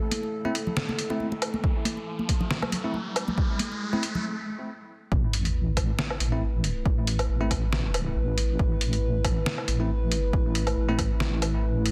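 A deep, detuned wobble bass with chorus and tube saturation arrives at the 5.1-second drop of this dark, brooding half-time deep dubstep fragment, following a build-up shaped by an electronic riser and sub drop, a punchy layered electronic kick, a gritty pitched-down sampler-style kit of hi-hat, snare and woodblock, close and dry congas with dub echo that stop at 4.2 seconds, bright bell-like tine electric piano stabs with dub echo, and a moody chorused analog pad holding sustained chords, all set in light digital ambience.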